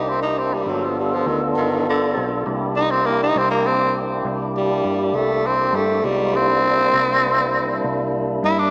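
A slow 12/8 blues at 67 BPM in C mixolydian, this soulful, swaggering fragment pairs a growling, raspy tenor saxophone that takes a solo from 2.5 seconds with a fat tonewheel organ holding sustained chords through a slow rotary speaker with key click, over a dark, round, foam-muted electric bass, all drenched in a lush hall reverb within a dreamy mix that has a small-speaker sound.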